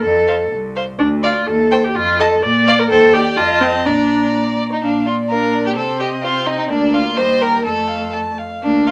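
A rich, up-front viola carries the accompaniment from the start of this spirited, lively classical-period string quartet movement in a quick 2/4, together with an intense cello on the bass line. At 0.3 s a warm first violin enters with an expressive melody, using vibrato, soft attacks and portamento, while a second violin plays an even, smooth-bowed second line. A moderate small-room reverb surrounds the ensemble in this short cut from a longer piece, which states its opening section twice.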